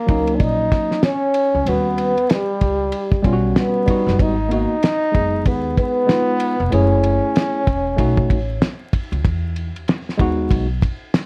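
A worn, warbling cassette-tape haze with vinyl crackle and a touch of light reverb colors this cool, smoky jazz-hop excerpt, cut from a longer piece, which moves at 95 BPM in 4/4 with a 60% swing on the sixteenths in Eb minor. Up front, a clear, punchy trombone carries the melody in a forceful jazz style with vibrato, while a mellow vibraphone played with soft mallets and the motor off rings a metallic second line further back in the mix; both drop out at 8.6 seconds. A tine electric piano, clean yet slightly out of tune and heard through its built-in speakers, supplies the accompaniment, and a woody pizzicato upright bass with steel strings holds the low end. The cloth-damped drum kit sits dry and thuddy up front, with a fat snare, tight kick, dark cymbals on hi-hat and ride, and a rolled-off top, playing on until 11.3 seconds. The harmony drifts from Ebm7 through Eb7alt, Abm7, Gbm9 and B9 before settling on Emaj7.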